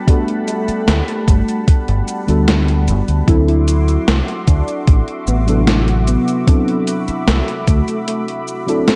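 A thumpy, tape-warm electronic kick and a gated 80s drum machine of snare, hi-hat and cabasa set a straight 4/4 pulse up front, joined at 0.7 s by a deep, round dub bass with tube saturation. Above them, a soft FM electric piano with phaser, chorus and analog delay plays alongside a lush, detuned sawtooth unison pad carrying 12-bit sampler grit, while a velvety synth lead with vibrato sings the melody over a change from Gmaj9 to D9. This dreamy, woozy vaporwave fragment sits in light digital ambience, and the kick drops out at 8.1 s.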